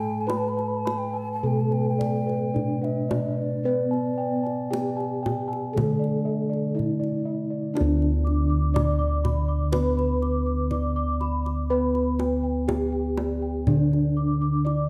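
Javanese gamelan in D pelog barang, ceremonial and shimmering at a slow 51-61 BPM, taken from a longer piece: a mellow bronze metallophone carries the melody with airy, beating paired tuning over a darker, smooth metallophone accompaniment, while round, up-front bossed gongs hold the bass and a tight, close kendang keeps the percussion. For the opening 7.8 seconds, padded, band-limited gongs with a vintage tint add soft arpeggios, and a hollow bass bansuri with vibrato and lifted highs traces a gentle second line until 5.7 seconds. From 7.8 seconds, a boxy, small-room metallophone takes over the arpeggios higher up, all set in a moderate recital-hall reverb.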